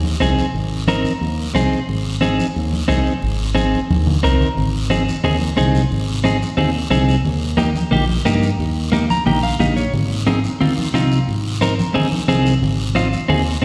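Joyful and danceable, this cumbia excerpt moves at a brisk 179 BPM in Ab major, cut from a longer piece. A smooth, up-front synth bass with a sawtooth and square-wave edge and a ringing, modulated tone holds the low end with sustained, fast-attacking notes, while a clean, picked electric guitar, dark and scooped with compressed polish, carries the accompaniment just as prominently. Soft-handed congas with a thick, damped skin sit in the background, joined by a raspy guiro that sounds close and dry. A drum fill from 3.6 to 4.6 seconds leads into the second section, where the harmony shifts from Ab to Eb at 7.2 seconds; the guitar then steps forward with a fill at 8.9 seconds before the harmony returns to Ab at 9.9 seconds. The whole ensemble rings in a reverberant church or concert hall acoustic, lending the groove a spacious, resonant glow.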